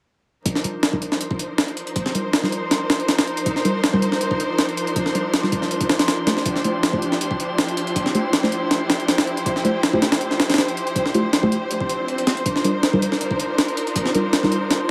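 Drum and bass with a jungle edge at 160 BPM, this nostalgic, raw excerpt sets gritty, pitched-up sampler drums with a thumpy kick up front against dark, lush bowed strings with vibrato, deep warbling chord stabs carrying chorus, dub echo and a filter sweep, a glassy drifting harmonics texture in the background, and a very quiet electronic swell at 11.9 seconds, all moving from Cm11 to Dm11 and back under vinyl crackle and moderate room reverb.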